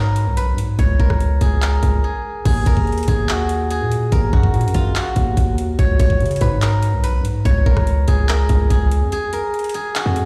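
A silvery, ringing, fingerpicked steel-string zither carries the dark, melancholic melody with delay over a punchy, up-front 808-style bass with a fast attack and a noise layer, and an electronic trap kit of knocking kick, metallic hi-hats, handclaps, rim clicks and crash entering at 0.2 seconds, all in a half-time 144 BPM trap groove in Eb minor, with breaks at 2.0 and 9.1 seconds and the whole mix sounding as if played through a big sound system in a bare room.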